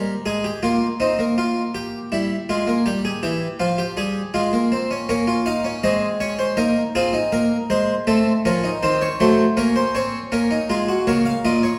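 A baroque-style four-part classical fugue for solo harpsichord in Bb minor, moving at a driving, serious 81 BPM in straight 4/4, cut from a longer piece. The Flemish-style instrument sounds plucked and brilliant, its octave strings adding to that brilliance, and it sits up front from 0.0 to 11.8 seconds while a wet recital-hall reverb lends a sense of listening from further back in the room. The harmony moves through chords such as Eb69/Bb, Fm, Ab69 and Adim7 before settling on Bbm at 9.6 seconds.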